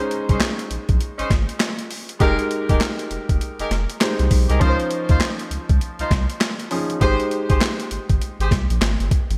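Bright, 1980s-style digital production with light small-room reverb frames this punchy, bouncy new jack swing excerpt, built on a gritty, pitched-down boom bap sampler kit of thumpy kick, high-tuned snare, handclaps and hi-hat, set up front and washed in gated reverb. A clear, polished baby grand piano plays extended chords moving from a rootless Bbm11 through Fm11 and Dbmaj9 to Abmaj7, while a deep, thick, saturated sub bass enters at 0.3 seconds. Tight, distant jazz-style horn section stabs with digital delay punctuate the groove until 8.5 seconds.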